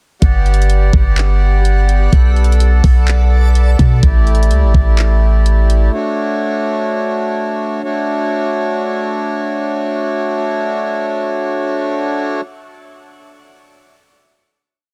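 A reedy, nasal hand-pumped harmonium stands out in this dreamy and blissful cloud-rap piece, holding sustained chords from 0.2 to 12.4 seconds with sidechain pumping and a breathing quality. At 126 BPM in a half-time feel and D major, the verse moves through Gmaj7, Bm7 and A7sus4 before settling on a Dmaj7 that rings out as the final chord from 7.8 seconds. Underneath, a deep, dark 808-style bass plays long sine sub-bass notes with pitch slides that follow the kick, up front until 5.9 seconds. The smooth, tape-tinged R&B drum kit lays down a sparse half-time beat with a knocking kick, handclaps and fast hi-hat rolls, stopping at 5.8 seconds. In the background, a bright, detuned backwards swelling texture adds a granular, reversed shimmer with built-in reverb for the first few seconds, all set in digital ambience and a dense, heavily limited modern master.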